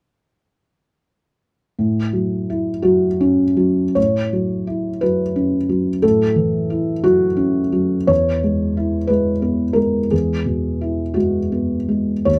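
Wistful and reflective, this neoclassical minimalist piano fragment from a longer piece drifts in a rubato 6/8 at 51-61 BPM, its solo felt-muted upright piano entering at 1.8 s on an A6 chord, opening into a new section at 4.0 s and shifting to E at 8.1 s, its dark, intimate tone captured up front by close, detailed microphones in light reverb.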